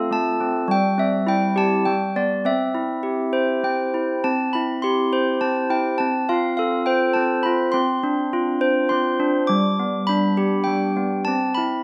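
In a three-beat metre played with a flexible, rubato feel, this short passage of children's music drifts along with a tender, innocent mood. A solo set of handbells carries the whole piece from 0.0 to 11.8 seconds, ringing across a span from G3 up to D6. Struck with hard clappers, the bells sound bright and clear, close-miked and placed up front. Around them, a moderate recital-hall reverb adds a soft halo. The harmony moves through simple, homely chords, opening on F/A and C/G before settling on C, then wandering through F/C, Dm7 and G on the way back home to C. A fresh section begins at 4.2 seconds, and the recording is cut from a longer piece.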